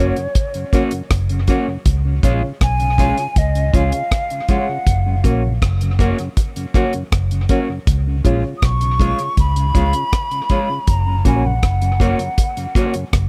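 A hollow, close-miked silver flute carries the sunny, uplifting melody through dub echo over a clean, fingered electric guitar also trailing echo, woody stabs from a boxy upright piano, a background tonewheel organ with chorus vibrato and slow rotary speaker, and a round, foam-muted bass, while a dry, up-front reggae kit of tight kick, rim click and hi-hat joins at 0.2 seconds in this 80 BPM roots reggae excerpt that sways between Gb and Db in a small room.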